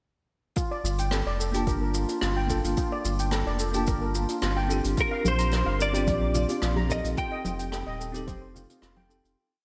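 Sunset chillout in G minor at 109 BPM with a warm, wistful mood, where shimmering steel pan arpeggios with delay and a round, up-front sine sub bass in a dotted rhythm ride over a deep electronic kick and a distant, roomy brushed kit with hi-hat, rim and shaker, bell-like tine electric piano adds filtered, syncopated chord stabs from 1.5 s, a dark, compressed clean electric guitar picks a chorused motif from 5.0 s alongside ringing congas and bongos in the background, and the bright 1980s-style digital production sits in a lush hall reverb as the groove fades out from 6.4 s.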